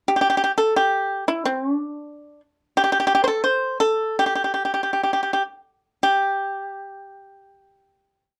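Rubato in 2/4, drifting between 55 and 92 BPM, this brief Chinese traditional piece for solo pipa in the G zhi mode has a flowing, serene mood and slows down from 2.8 to 6.0 seconds before settling on a final note held from 6.0 seconds. The acoustic pipa, played with fingerpicks, sits up front with a dry, percussive attack as it traces an ornamented modal melody between D4 and C5. Light reverb and a dark, warm production round out the sound.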